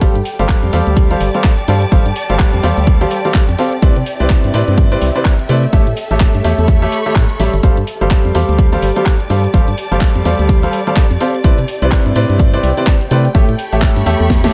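A swung groove drives this feel-good, euphoric piano house excerpt, anchored by a punchy, up-front electronic kick with a tape-warm, roomy character. A house kit of handclaps, hi-hat and a cracking snare sits lower in the mix, and a drum fill lands at 14.3 seconds. A bright, brilliant grand piano with a vintage tone and long sustain carries the riff up front, while a hollow, organ-like FM bass with a percussive, decaying attack holds down the low end. Beneath them, a dark, lush symphonic string section adds bowed ensemble texture with expressive vibrato and a smooth top. The piano, bass and strings all pump against the kick under light reverb, cycling through G9sus4, Cmaj9 and A7 for the full 14.5 seconds.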